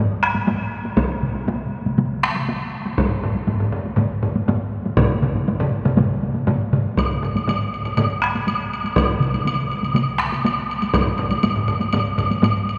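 Japanese traditional taiko drum ensemble music at 120 BPM in a straight 4/4, ceremonial and powerful, cut from a longer piece and set in a church or concert hall with a wet cathedral reverb. Several taiko ensembles struck with hard or heavy sticks fill the span, one close and dry, another vintage and band-limited up front, a third in a live room, while a solo taiko part with hard sticks sounds distant in a large room from 1.0 to 11.1 seconds. A woody woodblock enters at 7.0 seconds and carries on to the close at 12.8 seconds.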